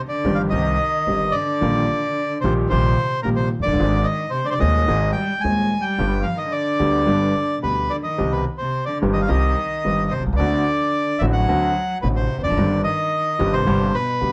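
The recording sits in a moderate studio reverb, with the bandoneon and piano up front and the cello heard close and intimate. This sultry, tense tango excerpt, cut from a longer piece, moves in 4/4 with a rubato feel. A reedy, dark, mid-forward bandoneon carries the melody, while a single bowed cello plays a second line sul tasto, with light vibrato and a soft attack. A concert grand piano with deep bass and a natural tone provides the accompaniment, and a woody, thumpy pizzicato upright bass on steel strings holds the low end. All four parts enter in the opening moments and play through to the end at 14.3 seconds, with the harmony moving from Cm through Ab and D7 before closing on Cm/G and G.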